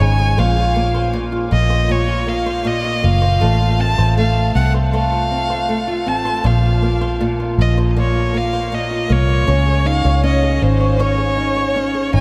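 A huge, dreamy ambient reverb washes over this reflective, tender acoustic pop excerpt, which moves at an unhurried pace in a straight 4/4 across its 12.2 seconds. Up front, a single bowed violin with focused, boxy vibrato carries the melody through delay, while a warm, fingerpicked flamenco guitar, complete with finger squeak, provides the accompaniment. Beneath them, a vintage foam-muted electric bass plays dark, round, amped low notes.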